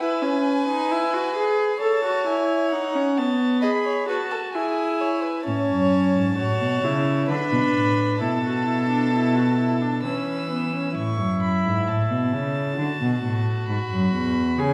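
Stately and elegant, this baroque-style fugue for string quartet moves in a straight triple metre and is cut from a longer piece. Each of the four bowed parts is a single player in period style on gut strings. The first violin carries the melody high above the ensemble with a light vibrato, while the second violin traces a supporting line in a nasal, airy tone that sits close before dropping out at 10.9 s. Beneath them the viola supplies a reedy accompaniment, and the cello joins at 5.5 s, placed up front with a rich bass voice. A wet recital-hall reverb sets the quartet further back in the room, giving the counterpoint a spacious, resonant bloom.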